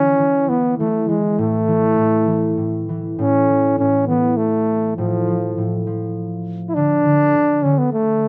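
A soft-attacked, smooth-topped trombone sings a tender classical-style lullaby melody up front while a ringing, thumb-plucked concert harp accompanies in A major at 101 BPM in a gentle 3/4, the innocent children's-music fragment moving from A5 to F/A in a dry, close 1970s-style studio sound.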